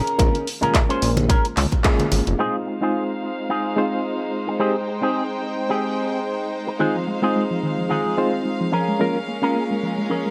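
A twangy, envelope-filtered electric guitar riff with dub echo runs through this sleek, sensual nu-disco excerpt at 109 BPM in F minor, joined by a barky, reedy electric piano with fast tremolo, while a punchy up-front kick (dropping out at 2.0 seconds), a fat detuned analog bass, a house kit with handclaps and bright hats, and distant hard-handed congas drive the groove until 2.4 seconds, when a close, intimate chamber string section enters with softly bowed chords and a soft, round, dark pluck adds gentle arpeggios from 6.8 seconds.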